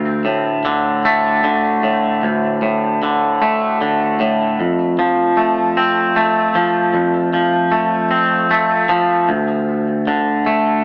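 A twangy electric guitar carries this brief, melancholic rock passage alone, its clean, fingered tone sitting up front with a compressed, warm body. The tempo is a slow 51 beats per minute in a straight 6/8, rooted in D minor, and the guitar ranges from D2 up to C4. A warbly pitch drift and a digital delay color the guitar, while a moderate scoring-stage reverb with a 1.9-second tail adds a digital ambience around it, all heard through a small-speaker sound. The harmony moves from D5 to F at 4.6 seconds as the opening stretch builds, then returns to D5 when a new section arrives at 9.3 seconds. Cut from a longer piece, the fragment ends at 10.8 seconds, leaving a brooding mood hanging in the air.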